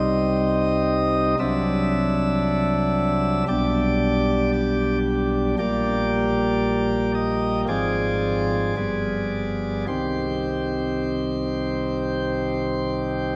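A rubato 4/4 pulse of about 52-58 BPM carries this serene, majestic classical chorale in C minor, cut from a longer piece, where a solo chamber organ's full principal chorus, voiced with chiff and sitting up front, spans G1 to E5 and moves from Cm through D7/C, G/B, Gm/Bb, Fm/Ab and G7b9 back to Cm, all bathed in a wet church reverb that lingers for 3.6 seconds.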